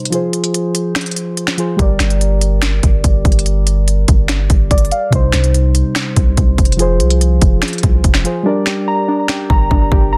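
Trap-flavored hip hop with a melancholic, eerie mood and a half-time feel, opening on muted, felt-like synth keys with a soft, intimate, chorused tone over an up-front electronic kit of a hard-clipped kick, sharp snare, crisp hi-hats and finger snaps. A deep, mellow, sine-like 808 bass with long decaying notes enters at 1.8 seconds. At 8.5 seconds the hi-hats drop out and a warbly, dusty, detuned lo-fi pluck arrives playing arpeggios through chorus and delay, all within a dense, heavily limited modern mix set in digital ambience.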